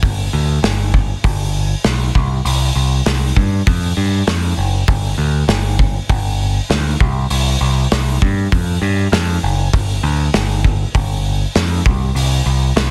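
Dry and dense, with a heavily limited modern sheen, this bittersweet, moody indie rock excerpt moves at 99 BPM in a straight 4/4. A growling picked electric bass, bright and overdriven, sits up front, while a loose acoustic drum kit of hi-hat, punchy kick and medium-tuned snare plays with a pumping room sound and a rolled-off top. Both parts run together for the full 12.9 seconds.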